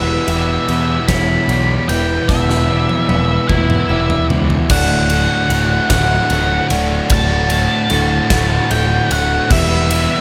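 A dark, fuzz-soaked octave lead guitar carries the melody through this hopeful, cinematic post-rock passage, cut from a longer piece and set in D major at a slow 50 BPM in a straight 6/8 feel. Beneath it, a sludgy overdriven guitar and a thick fuzz guitar set further back grind out a riff, anchored by a growling, punchy picked bass. A big acoustic rock kit sits up front with a fat snare, punchy kick and bright cymbals in a stone-room sound, playing a drum fill from 2.3 seconds that builds into the change at 4.7 seconds. Until that point, a twangy, clean electric guitar adds arpeggios in the background, while a hard-mallet vibraphone rings out metallic arpeggios with analog delay throughout. A very quiet, compressed pedal steel played with fingerpicks and slide holds sustained chords underneath as the harmony moves from Em to D and back to Em, all framed by light reverb and small room ambience.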